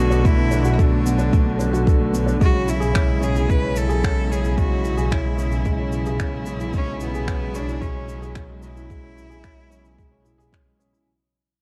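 Moving and melancholic, this short cut from a longer piece of piano and strings electronica sits in a steady, straight 4/4 with a dark, warm small-room production. A felt-muted upright piano carries the riff, its soft, mellow tone touched with audible action noise and tape echo. A bright, biting solo cello sings the melody with intense vibrato, also trailed by tape echo, while a string quartet holds rich, even sustained chords beneath. Up front in the mix, a bowed double bass section anchors a single low note, its tone thickened by tube saturation and breathing with sidechain pumping. An electronic kick drum gives a deep, layered pulse, and shaker with finger snaps add a natural, brushed texture. The passage opens on a drop and begins fading out at 2.4 seconds as the harmony moves from Bm7 to C#m/B.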